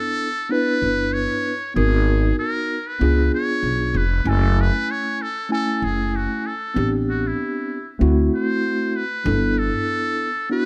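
Cool and smoky, this short jazz-hop cut from a longer hip hop piece moves at 96 BPM in 4/4 with a light 16th-note swing. A solo trumpet with a metal mute carries the melody from the first second, its tone buzzy and thin yet smooth on top, shaded with light vibrato in a jazz style. Beside it, a mellow tine electric piano plays clean accompaniment through its built-in speakers across the full 10.7 seconds. An upright bass enters at 0.8 seconds and drops out at 9.7 seconds, its pizzicato gut strings sounding woody and thumpy up front. The harmony drifts through jazzy colours such as G#m7, C#7b9, F#m9 and Am11 before settling back on G69, all wrapped in the studio ambience of a rough home demo mix.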